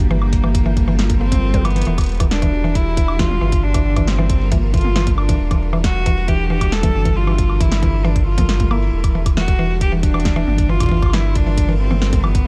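Melancholic and intricate, this dark IDM excerpt sets an intimate, airy-bowed cello melody with light vibrato, treated with delay and shimmer reverb, over a blurred, evolving granular cloud pad, a round sub bass up front, a tight tape-toned electronic kick, an analog drum machine with punchy snare, metallic hats, toms and woodblock that plays a fill at 1.6 seconds, and woody mallet-like synth pluck arpeggios colored by chorus, cassette tape and delay, while a faint, flickering grainy texture glints only until 1.9 seconds as the harmony sways between Gm9 and Em9.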